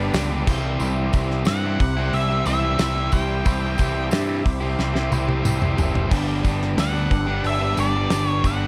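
Classic rock with a swaggering, driving feel, built on two overdriven guitar riffs (one biting and bathed in spring reverb) over a growling, up-front picked bass with its own grit, a damped 70s drum kit with a fat snare, tight kick and dark cymbals, a jingly tambourine in the background and very quiet sustained chords from a thick tonewheel organ on slow rotary speaker, while a dark octave-fuzz lead guitar melody enters at 1.5 seconds and the drums play a fill from 4.8 to 6.1 seconds.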